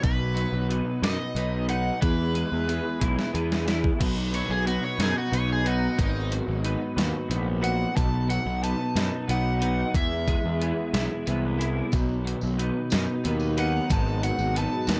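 Indie rock in 6/8 at 61 BPM, this upbeat, jangly cut from a longer piece sits in B major, moving through B, E and G#m7 under a dark production with light reverb. Up front, a thumpy, sampler-style 8-bit drum machine with a medium-tuned snare, hi-hat and crash is pushed into overdrive and re-recorded in a small room, and it closes the opening passage with a fill ending at 4.0 seconds. Beside it, a punchy fuzz bass drives the low end, while in the background a slightly broken-up, lo-fi guitar through a small old amp and a clean, twangy twelve-string with ensemble chorus both play riffs. A crunchy, bright overdriven guitar carries the melody from the start, then takes the lead with a solo from 4.0 seconds. At 11.9 seconds, a very quiet, mellow organ-string pad with a vintage, soft-attack tone adds sustained chords, and a jingly acoustic tambourine joins in the background.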